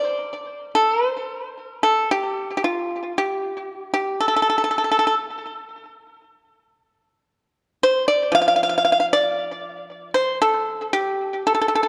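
Contemplative and full of longing, this short passage cut from a longer piece of Chinese traditional music moves at a free, rubato 58 BPM in 4/4. A lone acoustic pipa, played with fingerpicks, carries the whole 11.9 seconds across a range of F3 to F5, its percussive, up-front attack touched by tape echo. A moderate scoring-stage reverb and a dark, warm production give the solo a warm glow.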